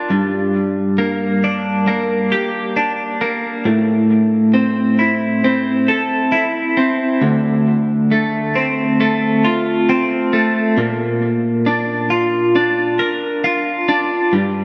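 Rock at 67 BPM in a brooding, cathartic mood, this short piece cut from a longer work features a solo twelve-string electric guitar, bright, twangy and up front with tremolo and tape echo, moving through Gm, Am, Dm7 and then Bb at 10.8 seconds inside a lush hall reverb that gives the whole mix a dreamy haze.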